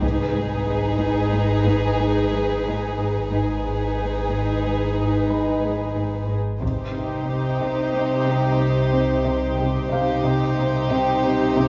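Moving at a straight 91 BPM in an uneven 5/4 metre, this fragment of a cinematic suspense score feels ominous and eerie. A dark, woody chamber violin section carries the melody with light vibrato, played sul tasto, while a symphonic violin section floats a soft-edged second line beneath it and a lush viola section holds a single accompaniment note. Two rich cello sections sit in the background, one playing a riff and the other doubling the bass with a distant double bass section, and a metallic, warbling FM drone with chorus, phaser and its own reverb hums low under the strings. A very quiet, band-limited taiko ensemble struck with hard sticks sounds briefly at the start and again at 6.6 seconds, where the harmony shifts from A-flat minor to C minor. A concert grand piano with deep bass touches the opening moment and then adds a background texture from 5.3 seconds, and the whole piece sits in a wet recital-hall reverb with a dull, rolled-off top end.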